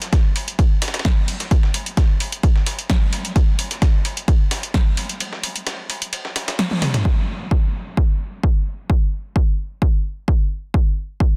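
Industrial and hypnotic, this straight 130 BPM techno cut pairs a gritty, high-passed sampler-style kit of hi-hat, ride and medium-tuned snare, heard in a large room, with an up-front analog drum machine whose tape-warm snare, low-passed toms and pumping hats sit over a layered, punchy electronic kick that enters at 0.1 s and carries on alone after both kits stop at 7.0 s, following a break with a band accent and a short drum fill, all under light reverb and a dense, heavily limited master.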